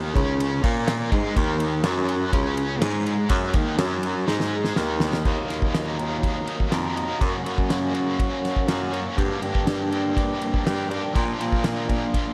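Light reverb and studio ambience surround this echo-heavy psychedelic rock mix, cut from a longer piece, with a trippy, hypnotic mood at 122 BPM in a straight 4/4 and tuning set to A4 = 438 Hz. A biting, overdriven electric guitar carries the riff, picked and double-tracked up front, its bright tone coloured by harmonic tremolo and tape echo. Beneath it, a raspy baritone saxophone takes the bass role, gritty and punchy, close-miked and sitting forward in the mix. A damped 70s acoustic drum kit enters at 0.2 seconds, dry and polished, with dark cymbals, a fat snare and a tight kick. A drum fill from 4.3 to 5.3 seconds leads into the second section. The harmony moves from Ebm through Gb and Gm to Bb.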